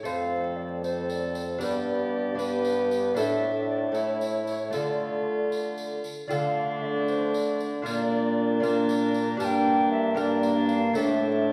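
A hollow, chiffy alto recorder with vibrato carries the melody of this solemn, courtly renaissance-style consort dance in D minor, moving at 77 BPM in a straight 6/8. A gut-strung viola adds a reedy second line, a soft-edged trombone and a fingerpicked, bright lute fill out the accompaniment, and a lightly vibrato bassoon holds the bass while a jingly tambourine sits low in the mix. The whole consort sounds heard from further back in a reverberant recital hall, with vinyl crackle over this fragment of a longer piece.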